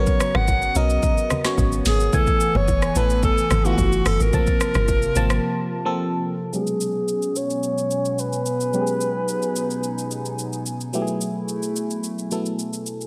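A light reverb wraps this late-night, soulful amapiano excerpt, cut from a longer piece and moving at 109 BPM in G# phrygian. A breathy alto saxophone carries the melody up front with vibrato and a touch of delay until 10.7 s. Beneath it, a barking FM electric piano adds biting, percussive chords coloured by chorus and phaser, while a hollow, flute-like pad sustains soft harmony with sidechain pumping. The afro-pop drum kit pairs a deep kick and sharp snare with metallic hats, rim clicks and shaker in a produced, tape-tinged sound. During the opening drop, a round, dark log drum bass sits up front beside very quiet, close bongos and congas, and both stop by 5.4 s for a short break. From 6.5 s a filter sweep carries the second section as the harmony moves through minor eleventh and seventh chords.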